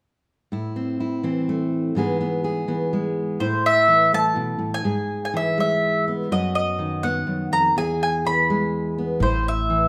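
Set in a large studio with moderate reverb, this melancholic, reflective acoustic folk fragment in 3/4 opens on dark fingerpicked steel-string guitar with audible finger squeak, joined at 3.4 seconds by a bright, round mandolin melody on doubled strings, while a woody pizzicato upright bass arrives only at 9.2 seconds to sound a low A under the closing A minor chord.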